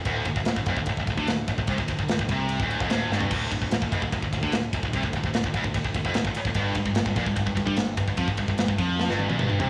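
Heavy metal at 148 BPM in a straight 4/4, heavy and aggressive, cut from a longer piece and tuned to A4 = 445 Hz, with a homemade cassette character and light reverb. A bright, double-tracked high-gain guitar riff sits up front beside a growling, overdriven fingered bass, while a tight, polished drum kit brings an airy big-room sound, bright cymbals and a medium-tuned snare; the guitar and drums carry cassette tape coloring. A drum fill ushers in a new section, the harmony lands on G7(no3) at 6.6 s, and another fill closes the passage from 9.0 s.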